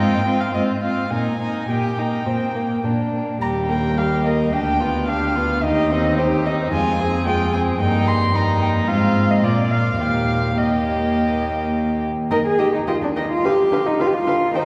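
Moving in a flexible four-beat pulse with a rubato give and take, this quick classical-period movement for string quartet sounds graceful and lively, and it is cut from a longer piece. The first violin carries the melody high up with a dark, nasal gut-string tone, light vibrato and a smooth top, played by one period-style player with the bow. Beneath it, the second violin's rich second line and the viola's accompaniment sit distant in the blend, both with light vibrato and a reedy edge. The cello holds the bass close and up front, the most prominent voice in the balance. The harmony turns through cadences on the home chord before a brief new section begins at 12.3 seconds, reaching a dominant seventh at 13.4 seconds. A wet church reverb with a long tail places the quartet further back in a resonant room.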